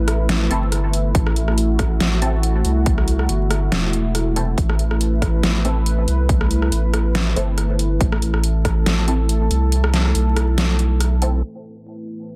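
Deep dubstep in a cavernous, meditative half-time swing, cut from a longer piece, where a thick, saturated sub bass sits up front under a moody, chorused analog pad, muffled dub chord stabs drenched in phaser and echo, an overdriven drum kit with a deep snare and filtered hats, and a punchy overdriven kick that enters at 1.1 seconds and drops out from 9.7 seconds, all wrapped in vinyl crackle and a dense, heavily limited master.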